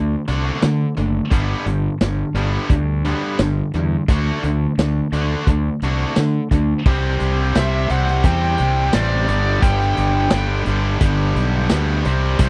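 Classic rock at 87 BPM in G major, this short cut from a longer piece has a sunny, confident mood and a straight 4/4 feel. Two bright, picked electric guitars drive the riff from the start, one overdriven and the other tight and distorted, moving through D, G and then Csus2 chords. A fuzz-laden fingered bass sits up front with a growly, punchy tone, while a vintage acoustic kit enters at 0.3 seconds with a punchy kick, medium-tuned snare, dark cymbals, hi-hat and tambourine. At 7.6 seconds a biting lead guitar adds a high overdriven melody colored by tape echo, lasting until 10.6 seconds. The sound is dry and close, in the manner of a 1970s studio recording with little reverb.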